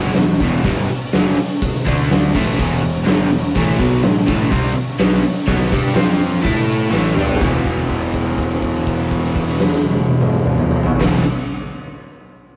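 An oversized, low-tuned drum kit with dark cymbals, a punchy kick and gritty saturation sits up front in this swaggering, raw garage rock excerpt at 124 BPM in E minor, alongside a crunchy, double-tracked overdriven guitar riff and a fuzz-soaked picked electric bass in a rough rehearsal-room sound with light reverb, until a drum fill at 6.9 seconds opens onto a held note from 7.4 seconds.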